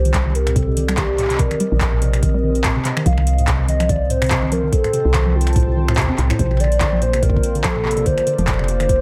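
A swung 144 BPM pulse in 4/4 drives this melancholic, eerie IDM excerpt in C dorian, where a soft overdriven electronic kick and a booming analog drum machine of finger snaps, handclaps and metallic hi-hats underpin a round, woody FM bass, a detuned lo-fi pluck playing chorused, tape-worn arpeggios, a sawtooth pad with sampler grit and sidechain pumping holding Cm7, F7/C and Bbadd9, and a vintage, vibrato-laden lead melody trailing tape echo through an echo-heavy mix with light digital ambience.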